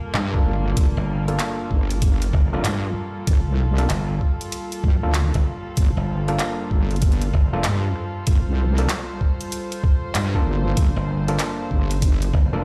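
A swung 16th-note groove at 96 BPM in 4/4 drives this playful, swaggering glitch hop excerpt in G minor, where a thumpy, pitched-down overdriven kick and a bright-hatted kit of handclaps and rim clicks play alongside a heavy, resonant wobble bass and a punchy overdriven slap bass entering at 1.0 seconds, while an auto-wah clav stabs through a filter sweep with digital delay and sidechain pumping over a dark, nasal chamber string section holding a Gm9 chord with 12-bit sampler grit, all set in a stone-room reverb as if played on a big sound system in a bare room.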